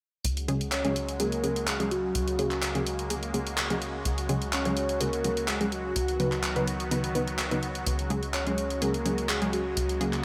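Uplifting and expansive, this progressive house excerpt moves at 126 BPM in a straight 4/4, cut from a longer piece and built on chords that circle around Dbsus4, with Gbadd9/Db and Cb/Db between. A filtered supersaw swell of detuned sawtooth voices holds sustained chords with a slow attack and an evolving character, while a tight sequencer bass pulses on Db2 with a nasal, punchy bite and quick decay. Up front, the house drum kit is electronic and layered, its handclaps and hi-hat carrying a tape-warm sheen from being re-recorded in a large room. From 0.5 seconds a lush, detuned unison pluck with a wave-folded edge adds full-bodied stabs through a delay, and at 0.7 seconds a soft octave-layered synth lead enters with a round, dark tone, sub-octave weight and vibrato, colored by chorus, phaser and delay. Light reverb surrounds all the parts.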